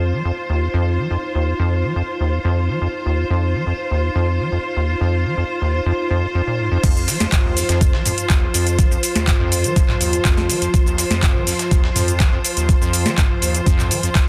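A squelchy, hollow square-wave acid bass riff sits up front in this raw, driving acid house excerpt from the very start, alongside a clear bowed string section with vibrato and a dark, warbling lo-fi pad in the background, both pumping against the sidechain over a sustained F7(no3) chord. At 6.8 seconds the drop arrives with a thumpy electronic kick, an overdriven, booming analog drum machine with crisp snare, metallic hats, handclaps, shaker, toms and crash, and a very quiet, gritty sampler-style kit adding hi-hat and snare. The mix sits in light digital ambience under a dense, heavily limited modern master.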